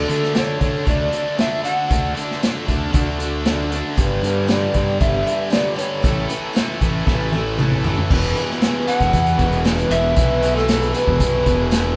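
An airy, tongued pan flute carries the melody from the first moment in this swaggering, gritty classic rock excerpt at 116 BPM, over a very quiet, shimmering twelve-string acoustic guitar and two picked electric guitars, one cranked and overdriven and the other tight and distorted, playing riffs above a round, punchy fuzz bass. A vintage drum kit sits up front with dark cymbals and a tight kick, and a jingly tambourine joins at 4.0 seconds as the chords move from D through G and A. A drum fill at 7.1 seconds leads into a new section on E minor, all played live in a stone room with moderate reverb.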